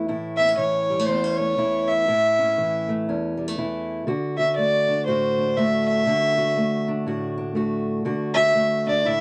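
Close, dry and lightly reverberant, the sound recalls a 1970s studio session, capturing a short cut from a longer piece of acoustic country blues for solo or duo. The mood is soulful and gritty, moving at 121 BPM in 4/4 with a swung eighth-note feel, and the instruments are tuned to A4 = 438 Hz. A fingerpicked steel-string parlour guitar opens at 0.0 s, its boxy, woody tone and old strings giving the accompaniment a dusky character. A single bowed fiddle enters at 0.4 s and carries the melody high above, sitting a little louder than the guitar with a nasal, shadowy voice and light vibrato. The harmony rests on A before shifting to D at 4.1 s, and both players stay up front in the mix until the cut ends at 9.2 s.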